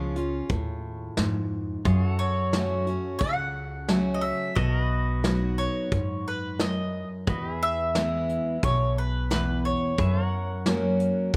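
The recording is dry, with little reverb, and the mandolin, acoustic guitar and brushed drums sit up front. This is a short excerpt of sunny, nostalgic honky-tonk and classic country in E major, moving at an easy 89 BPM in a straight 4/4. A bright, woody mandolin picks the melody on doubled strings, while a crisp dreadnought acoustic guitar with fresh strings plays the accompaniment underneath. A clean, compressed electric pedal steel holds soft sustained chords behind them, played with fingerpicks and slide and shaped by volume swells. A thumpy plucked upright bass anchors the low end, and a soft brush kit, with a tight kick, medium-tuned snare and hi-hat in a small room, joins at 0.2 seconds with a rolled-off, mellow top. The chords pass from C# to F#m, B and E before landing on F# at 10.0 seconds.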